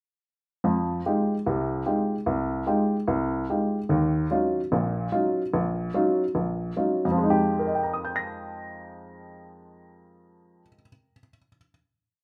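A dark, mellow baby grand piano plays solo in this brief, intense and hypnotic jazz piece in F minor, swinging in 4/4 at 147 BPM. It uses a stride bass and close voicings over Fm9 and Ebm9. Heard up front and intimate, the piano has a natural, short-sustained tone with audible action noise, set in a wet club reverb, and its opening theme gives way at 7.2 seconds to a closing Fm9 chord.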